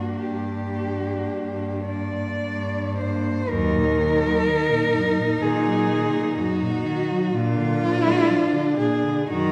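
Played in a flexible rubato over a slow four-beat pulse, this melancholic, elegiac passage for a quartet of cellos is cut from a longer classical piece. A dark-toned cello carries the melody up front, its bowed line expressive with vibrato and portamento, while a rich, even second cello moves smoothly just beneath it. A warm, focused cello fills in the accompaniment, and a clear, focused cello anchors the bass, each sounding throughout with a single bowed player and its own vibrato. The harmony shifts from G minor to E-flat minor at 3.5 s, opening a second section that turns toward a B-flat seventh chord at 7.3 s. The mostly close-sounding parts bloom into the generous reverb of a recital hall, lending the ensemble a mournful, resonant grace.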